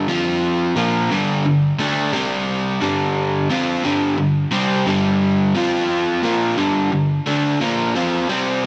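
A crunchy overdriven electric guitar plays alone from the very start of this short rock excerpt, cut from a longer piece and running to 8.7 seconds. The tempo sits at 88 BPM in a straight 4/4, in G minor, with the tuning set slightly low at A4 = 437 Hz. The guitar is picked, bright and double-tracked, placed up front, and covers a range from G2 to F4. The chords move through F5, Gm, C5 and G5 before returning to F5 and Gm, giving the passage a gritty, driving mood. A digital delay trails the guitar, and a moderate echo chamber reverb with a 1.8-second decay gives the sound a sense of space.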